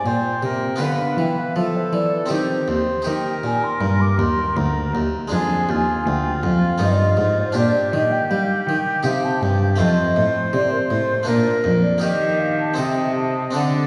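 In a rubato 3/4 at 80 BPM, this grave yet flowing baroque-style sonata movement, cut from a longer piece and settling into G minor from 7.6 s, sets a mellow, hollow wooden flute melody over a warm oboe second line, an airy, bright, plucked harpsichord accompaniment and a dark, gut-string bowed cello bass, all heard from further back in a concert hall with a wet 2.4 s reverb.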